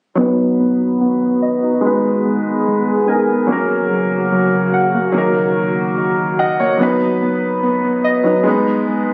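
Hip hop excerpt at 145 BPM in a half-time feel, melancholic and dark, where an up-front baby grand piano with long sustain accompanies muted, felt-like synth arpeggios with chorus and delay over chords of B, Abm, Gb and Ebm, while a warbling, detuned, nostalgic pad holds sustained chords from 0.8 to 6.8 seconds, a filter sweep runs through the opening section, and a piano fill at 6.2 seconds leads into a new section, all captured on a phone in the room with small-room reverb.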